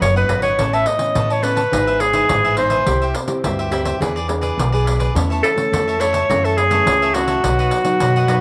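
A breathy alto saxophone carries the melody up front in an intimate, whispered subtone with light vibrato and a soft attack, phrased in a jazz style over this festive, lively samba and choro excerpt in E major at 105 BPM. A bright, crisp picked cavaquinho and a full-bodied, fingerpicked classical nylon-string guitar fill out the accompaniment, while a woody pizzicato upright bass and a jingly pandeiro played with soft hands drive the straight 4/4 feel. All five parts play throughout the 8.4 seconds, set in a small room with light reverb.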